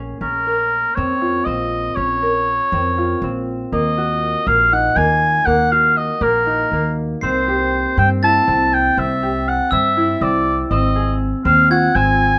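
In a straight-feel 7/8, this pensive, hypnotic piece of contemporary chamber music sets a bright, thumb-plucked concert harp weaving ringing arpeggios up front over the woody, thumpy pizzicato of a gut-strung upright bass. A solo oboe in classical style carries the melody from 0.2 seconds, its tone warm yet distant and roomy, and at 7.2 seconds a vintage, band-limited glockenspiel struck with brass mallets adds a metallic, bell-like shimmer in the background. Moderate studio reverb surrounds this short cut from a longer work.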